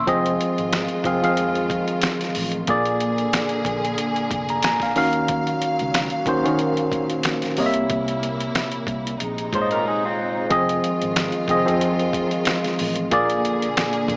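A worn, slightly out-of-tune tine electric piano, a lush, bowed studio string section and a dark, round muted bass in the background open this introspective, sultry R&B and neo-soul excerpt, joined by an up-front, gritty, pitched-down boom bap sampler-style kit of thumpy kick, snare, hi-hat and finger snaps over a lightly swung feel, with the electric piano taking a fill at 4.3 seconds and a slightly broken-up, lo-fi electric guitar stepping forward from 9.6 to 10.5 seconds, the mix carrying light reverb and a small-speaker sound.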